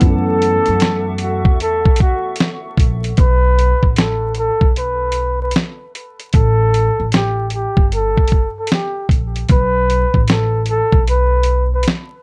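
A bucket-muted trumpet carries the melody up front in a veiled, breathy jazz voice with light vibrato and scooped notes, over a gritty, compressed sampler-style drum kit with a thumpy kick and a woody pizzicato upright bass in this melancholic, reflective lo-fi hip hop excerpt at 76 BPM with a swung 16th-note feel. For the first 3.2 seconds a dark, boxy upright piano plays softly and a cloudy, evolving granular pad sits in the background over an F#m7 chord before both drop away, leaving trumpet, bass and drums to move through suspended chords. Vinyl crackle and light reverb lend the whole a dusty, reflective haze.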